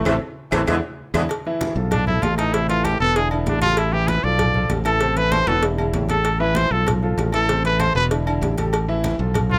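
Salsa excerpt, danceable and passionate, that opens with a punchy trombone section and an edgy saxophone section in the background striking a band accent over a drum fill and woody claves, before a bright, vibrato-laden trumpet takes an up-front solo from 1.9 seconds, carried by an intimate upright piano with audible action noise, a direct fingered electric bass, soft low-tuned congas, a tight high-tuned cowbell, and ringing timbales and agogo bells in light reverb.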